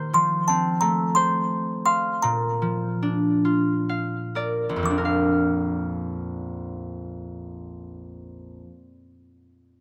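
Rocking gently in 6/8 with a loose, rubato feel, this lullaby drifts between 39 and 61 beats per minute on the dotted quarter, slowing down from the opening through 4.9 seconds. Cut from a longer children's piece in Bb major and tuned to A4 = 438 Hz, it has a sleepy, tender mood, moving from an F chord to Bb at 2.2 seconds. An up-front concert harp carries the accompaniment with ringing, fingerpicked tones across a broad span from Bb1 to F5, adding a fill between 3.4 and 4.9 seconds before the second section begins. Above it, a music box plays the melody high up, between A5 and D6, with a delicate, tinkling sound like a small box, and a slapback echo trails each plucked note. Recorded outdoors with light reverb, the short passage ends with the harp sounding on to 8.7 seconds, just after the music box stops.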